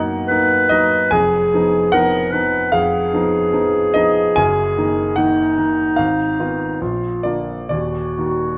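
Elegiac and melancholic, this brief romantic classical duo in Eb minor drifts in a rubato 4/4 at 64-77 BPM, tuned to A4 = 444 Hz: a clear concert grand piano, up front with natural tone, deep bass and short sustain, lays down the accompaniment from 0.0 s through Bmaj7, Fm7b5 and Bb before settling on Ebm, while a vintage-toned clarinet in classical style enters at 0.3 s to carry the melody, all set in a moderate recital hall reverb and captured by close, detailed microphones.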